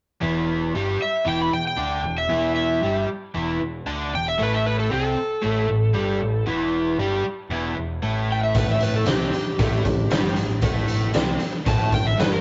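A straight 4/4 groove at 115 BPM drives this gritty excerpt of blues rock power-trio and southern rock, tuned slightly flat to A4 = 437 Hz. A dark, double-tracked, compressed electric guitar riff with spring reverb and a growling, overdriven picked bass carry the Em7 to Gsus2 changes from the start, while a warm, fingered slide guitar sings the melody up front from 1.0 seconds. A raw garage kit with a punchy kick, medium-tuned snare, hi-hat and saturated, rolled-off tone joins at 8.5 seconds, all caught in a rough, muffled rehearsal-room sound with a small room's reverb.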